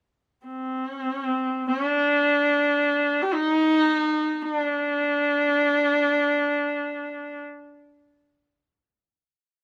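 A rich, reedy solo viola with a gut-string tone and light vibrato plays alone from 0.5 to 7.4 seconds in free time, its period-style bowing set up front yet distant in light reverb, lending this austere, calm fragment of Japanese traditional chamber music a close, detailed intimacy.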